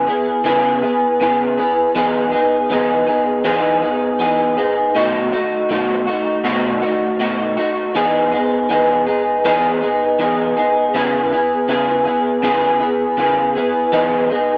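Indie pop at a mellow 80 BPM in 4/4, this lonely fragment of a longer piece features a solo electric guitar through a small old amp, picked and up front with a slightly broken-up, lo-fi tone, ensemble chorus and warbly pitch drift, drifting through C#m7, Emaj7 and B7 across 14.6 seconds in a moderate studio reverb.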